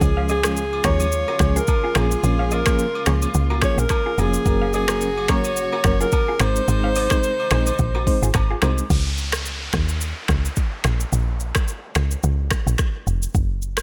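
Breezy and romantic, this afrobeats excerpt in Db major moves at 108 BPM with a gentle 16th-note swing, led by a breathy, intimate, close-miked alto saxophone melody with vibrato and delay, over a mellow FM electric piano with tremolo, a lush bowed string section in the background, and a slightly broken-up, picked electric guitar riff through a small old amp. Up front, a woody, punchy log drum bass and an electronic afro-pop kit with a deep kick, metallic hi-hats, finger snaps, rim clicks, shaker and crash drive the groove, while agogo bells and woodblock add live-room colour. By 8.9 seconds the melody, keys, strings, guitar and hand percussion have dropped away, and a Dbsus2 chord arrives. The bass and drums carry on, joined by an electronic downlifter, until the cut at 13.8 seconds.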